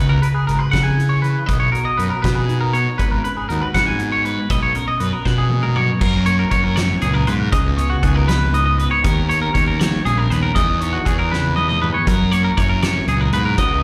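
Wistful and intricate, this math rock and midwest emo passage moves in a straight 6/8 and is cut from a longer piece. A bright, twangy electric guitar sits up front with clean, picked, compressed arpeggios, while a dark, mellow electric guitar plays fingered accompaniment in the background; both carry a slapback echo. A fuzz-laden fingered bass, overdriven and up front, gives the low end a thick, gritty body. The loose indie drum kit sounds distant and roomy, with dark cymbals, a fat snare and a punchy kick, and it rolls into fills at 5.3 and 11.3 seconds. At 6.0 seconds the harmony shifts from a C#m7, Bmaj9 and G#m9 cycle toward F#7, C#sus2, D#7b13 and Emaj7. The whole thing comes across like a live gig heard through the venue's PA, with a recital-hall reverb around it.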